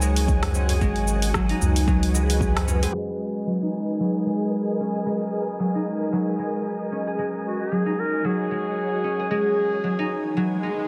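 A mellow, ringing concert harp plays up-front arpeggios through tape echo and shimmer reverb in this earthy, mystical organic downtempo excerpt in G# minor at 113 BPM, joined by an ethereal detuned pad, a breathy wind-like noise texture, a round analog bass, deep house drums with a deep electronic kick and low-tuned tabla that stop by 3.1 s, before a filter sweep moves across the harp and pad and a soft-attack classical clarinet solo enters at 7.5 s ahead of a closing electronic swell.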